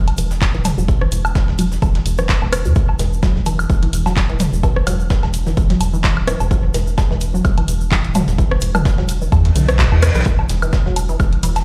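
A rubbery, hollow square-wave bass sits up front from the very start, pumping with sidechain alongside an upfront, punchy electronic kick in this sparse, hypnotic minimal techno excerpt at 128 BPM in 4/4, with a light swing on the sixteenths. Around them, an analog drum machine supplies handclaps, hi-hat and rim click, while a layered, overdriven techno kit adds rim click, toms and woodblock through dub echo. A squelchy, detuned blip pluck carries the riff between B2 and B3, colored by phaser and digital delay and pumping with the sidechain, as a filter sweep moves over a synth arpeggio sound up to 10.3 seconds. Further back, a gritty, pitched-up sampler-style kit adds filtered hi-hat and snare, and a grainy tube shaker sits close and dry in the background. A reverse cymbal rises from 9.5 seconds and a drum fill lands at 10.0, leading into a drop with an electronic impact at 10.3 seconds. 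The whole mix carries light reverb and the feel of a big sound system in a bare stone room.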